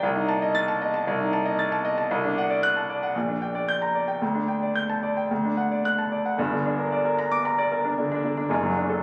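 Captured on a phone in a recital hall with a moderate 1.6-second reverb, extra club reverb and compression, this brief passage cut from a longer classical virtuoso piano study in G minor, tuned to A4 = 438 Hz, sets a solo concert grand up front with a clear, polished, present tone, deep bass and short sustain, spanning F#1 to A6 at 114 BPM in a rubato 4/4 as it moves through Adim/C, D7/C, Gm/Bb and Dsus4 to D before turning to a new section at 6.4 seconds on Gm and D/F#, its mood sparkling and heroic.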